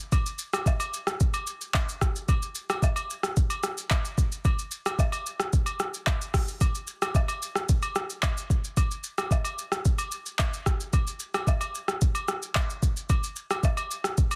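This amapiano groove moves at 111 BPM in a straight 4/4, carried by a smooth R&B drum kit that runs from 0.1 to 14.4 seconds with handclaps, hi-hat, kick drum, rim click and shaker. The mood is hypnotic and soulful, sustained across a single unchanging section in this short cut from a longer piece. The kit sounds electronic and produced, with a soft kick, metallic hats and soft clipping on the snare, sitting up front after being re-recorded in a small room. Agogo bells and woodblock fill out the percussion over the same span, joined by maracas and a group handclap, their acoustic tone compressed and saturated and placed lower in the mix. A digital ambience surrounds the parts, and the master is dense and heavily limited in a modern style.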